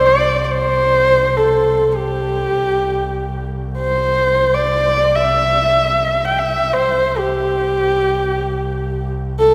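A dark, husky horsehead fiddle carries the melody from 0.0 to 9.5 seconds, played by one bowed player on horsehair strings, close and up front in the mix. Its line moves between G4 and G5 with expressive vibrato and portamento, giving this short Mongolian folk excerpt a proud, galloping mood despite its free time. Beneath it, a single bowed double bass holds a low C2 drone throughout, its tone rich, smooth and even with vibrato, sitting well below the fiddle in level. The music rests in a C gong mode at standard A4 = 440 Hz tuning. The room is a church or concert hall with a wet reverb whose 3.2-second tail lends the traditional sound a spacious, resonant frame.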